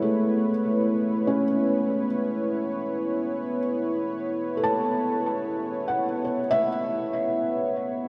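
Bathed in a lush hall reverb, this weightless, peaceful ambient passage pairs a smooth, detuned analog pad holding sustained chords through chorus, with its slow attack and long release, against a felt-muted upright piano playing mellow, intimate arpeggios through tape echo, with thick felt and audible action noise, both parts dark and up front.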